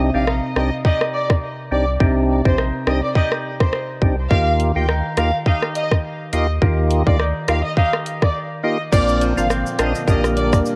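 A worn, warbling cassette-tape sound with light digital ambience wraps this sultry, hypnotic dancehall excerpt in C minor at 104 BPM, where an electronic, up-front island pop drum kit with tight kick, warm hats, rim click and shaker plays alongside a thick, deep saturated sub bass, a fat percussive tonewheel organ through overdrive and a slow rotary speaker, twangy clean electric guitar arpeggios and an expressive bowed violin section melody with portamento and tape echo, before a brief break at 8.3 seconds gives way to a quiet background tube shaker and, from 9.5 seconds, a very soft, glassy, ethereal FM pad.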